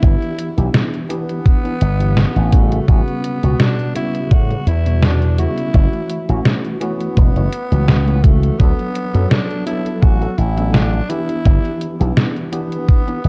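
Vaporwave with a faded, dreamy mood, this excerpt cut from a longer piece moves at 84 BPM in 4/4 with a light swing on the sixteenths. A raspy, growling tenor saxophone carries the melody in a jazz style with light vibrato, sitting back in the mix and trailed by tape echo. Beneath it, a worn, slightly out-of-tune tine electric piano plays the accompaniment, lightly overdriven and thickened with analog chorus, as if heard through built-in speakers. A punchy slap bass with an envelope filter sits up front, joined by a thumpy electronic kick and a detuned 8-bit drum machine whose hi-hat and snare carry gated reverb and a tape-softened, small-room character. The chords drift from G6 through A13, F#m7 and D6 before returning to G6 near 11.1 seconds, all captured dry and with the hazy grain of cassette tape.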